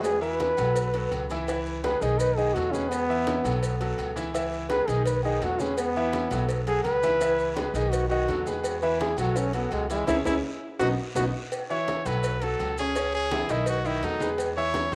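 Salsa with a sunny, danceable lilt, cut from a longer piece and captured as a home cassette recording with light reverb and a small-room ambience. A close-miked trombone leads up front from the opening, its bright, vibrato-laden pop-style solo trailed by tape echo over a cycling E, B5, C#m7, B7 progression, until a band accent and a drum fill close the section at 11.5 seconds. At 11.7 seconds a trumpet takes over the solo line, smooth on top and sung with vibrato. Underneath, a brilliant, intimate grand piano, its action noise audible and its tone ringing with long sustain, accompanies alongside a dark, woody upright bass played pizzicato on gut strings with a thumpy attack. In the background, ringing low-tuned congas struck with hard hands, distant metal-shell agogo bells and timbales, a raspy guiro and grainy maracas fill out the groove, while a round, low-tuned cowbell sits very quietly beneath them.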